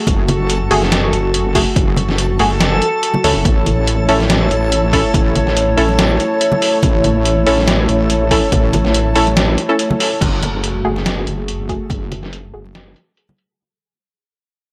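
Deep dubstep in F# minor at 142 BPM, this dark, brooding excerpt rides a half-time feel with a light swing on the sixteenths, moving from F#madd9 to A and back. A heavy, saturated wobble bass in sawtooth and sine sits up front, its wobbling tone thick with chorus yet mellow, while a punchy, overdriven electronic kick anchors the low end. A compressed, pitched-down sampler-style kit adds a muffled snare, hi-hat and crash with filtered tops and grit, and bright, damped congas with dub echo tick quietly in the background. Above them a moody square-and-sawtooth pad with ring modulation and a sub octave holds sustained chords, muted dub chord stabs with echo pulse behind it, and a reversed, granular texture swells dreamily until 10.2 seconds. After a short break at 9.8 seconds, the drums take a filter sweep as the piece fades out from 10.2 seconds, all captured with a dry, gritty hardware character and light reverb.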